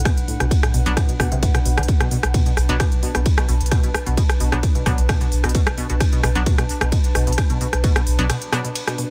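This short excerpt, cut from a longer track, is a dry, close-sounding slice of driving peak-time techno in B minor, relentless and intense at 131 BPM in a straight 4/4, tuned slightly sharp to A4 = 441 Hz. A heavy, layered electronic kick leads the mix beneath a deep, round sine sub bass on B1, which is overdriven, low-pass filtered and pumped by sidechain compression. A tight, evolving sawtooth riff moves between A2 and D3 with a filter pluck, colored by chorus, tube saturation, tape echo and the same pumping. From 0.9 seconds, crisp, bright wavetable chord stabs with a short decay punch between F#3 and D4, also pumped and echoed. Above them hang smooth hats, ride cymbal and rim clicks from the drum kit, plus a warbling, nostalgic pad of detuned sawtooth and triangle tones, lo-fi and dark, with slow attack, chorus and its own reverb. The kick stops at 7.9 seconds and the sub bass at 8.3 seconds, opening a brief break over the single Bm chord.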